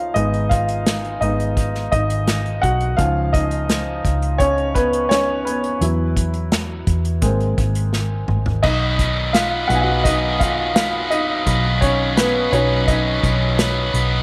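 A woody, slightly detuned upright piano leads this anthemic, warm piano-driven pop passage at 85 BPM in 4/4, playing up front over chords that move from Abm through Dbadd9, Esus2 and Abadd9 to Cb, backed by a round, foam-muted vintage electric bass and a small-room acoustic kit played with bundle sticks, with dark cymbals and a punchy kick. A drum fill at 7.9 seconds leads into a new section at 8.6 seconds, where a bright, picked overdriven electric guitar riff joins up front. The recording is set in a moderate spring reverb and is cut from a longer piece.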